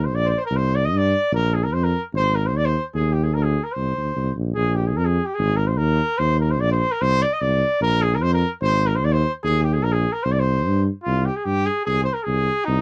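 Balkan folk in C minor at a brisk 148 BPM in 2/4 with a straight feel, this short excerpt cut from a longer piece has a restless, virtuosic mood. A mellow trumpet carries the melody between Eb4 and Eb5 throughout, played in a classical style with light vibrato and a distant, roomy character while still sitting up front. Beneath it, a mellow tuba holds the bass from Ab1 to G2, also classical in style with light vibrato and a smooth top, placed up front and slightly louder than the trumpet. The harmony circles through Eb, C, Bb and Ab power chords, with suspended and added-ninth colours such as Ebsus4, Bbadd9 and Csus2 appearing along the way, before a contrasting passage begins at 11.0 seconds and settles on Ab/C. The sound is dry and close, like a 1970s studio recording with little reverb.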